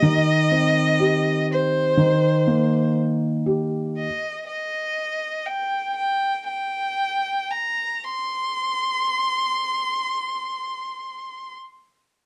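A bowed solo violin with rich vibrato and portamento carries a reflective, melancholic folk melody over soft arpeggios from a felt-muted upright piano, whose mellow, intimate tone comes with audible action noise. The piano stops at 4.1 s as the music begins slowing down, leaving the expressive violin alone until 11.5 s. Moderate studio reverb and a dark production give this fragment of a longer piece a hushed, distant air.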